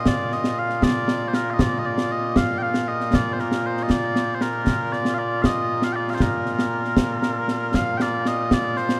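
This Scottish pipe music, cut from a longer piece, has a ceremonial, stirring mood in a straight 6/8. Mellow small bagpipes carry the sweet, continuous melody up front with vibrato from the opening, and concert snare and bass drum join at 0.1 s, up front with bright cymbals and a close, dry sound. A vast, echoing cathedral space surrounds the performance, and the tune moves into a new section at 7.7 s.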